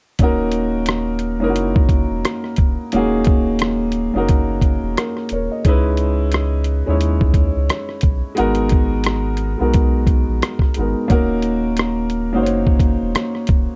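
Lo-fi hip hop at 88 BPM in 4/4, this hazy, reflective excerpt sits in Eb phrygian with a swung sixteenth-note feel. A dark upright piano carries the accompaniment up front, its woody, mellow tone softened by cassette tape character and a low-pass filter as the chords move from Ebm7 through Dbm7 and Abm7 before returning to Ebm7 at 11.1 seconds. Beneath it, a soft dub sub bass gives deep, round sustained notes with a fast attack and a triangle-and-square-wave colour. The sampler-style drum kit, also up front, supplies hi-hat, rim click and a thumpy kick, sounding compressed, pitched down and muffled with vintage 12-bit grit. Light reverb and a dark production wrap the parts together, and all three play from 0.2 seconds to roughly 13.7 seconds, the piano ringing slightly longer.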